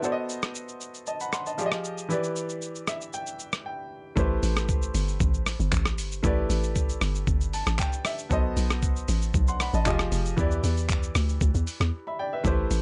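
A clear grand piano and a gritty, compressed sampler-style drum kit with a thumpy kick, handclaps, hi-hat, rim click and shaker open this deep, hypnotic amapiano excerpt, the piano adding fills before a hollow, bouncy log drum bass arrives with the drop at 4.2 seconds and a brief break lands at 11.9 seconds in a dry, up-front mix.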